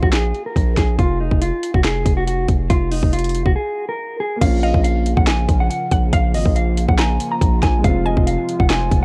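Melancholic and eerie, this half-time trap cut, taken from a longer piece, unfolds over a worn, warbling cassette-tape haze with a drifting pitch. A clean, fingered electric guitar carries the melody throughout, its compressed tone mellow and shadowy, while a heavy, saturated 808-style bass sits up front with an aggressive, distorted bite. The trap kit is just as forward, pairing a hard-clipped kick and sharp snare with metallic hats, handclaps and a crash cymbal. A boxy grand piano plays quietly in the background for the first second, drops away through the opening break, and returns at 4.4 seconds. At that point a deep, moody analog pad also enters, detuned and wave-folded with a slow attack and long release, and a woody, round mallet-like FM pluck follows at 4.6 seconds, adding a bright second line treated with chorus and tape echo.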